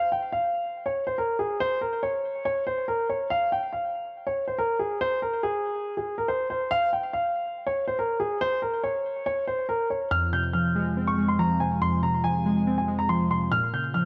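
A dark, mellow baby grand piano carries the long-sustaining melody through low-pass filtering and delay in this ominous half-time hip hop excerpt, joined at 10.1 s by warbling, detuned lo-fi synth keys with chorus and a filter sweep as the harmony moves from Fm to Bbm, set within a light studio reverb.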